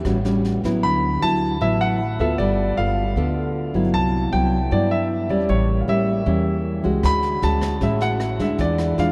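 Bossa nova at 155 BPM in 4/4 with a straight feel, this short excerpt from a longer piece sounds sophisticated and breezy, set in a vast, echoing space with a wet cathedral reverb. An up-front, thumb-plucked nylon-string guitar carries the accompaniment throughout, while a woody, growly upright bass with steel strings plays pizzicato underneath from 0.1 seconds. A polished, present grand piano takes the melody from 0.8 seconds, and a mellow, distant French horn section holds very quiet sustained chords in a classical style. The jazz brush drum kit, with its boomy kick, medium-tuned snare and rim click, plays only at the very start and returns at 7.0 seconds. The harmony moves through rich extended chords, from A13 and D69 through Cmaj9#11 to a closing E7b9.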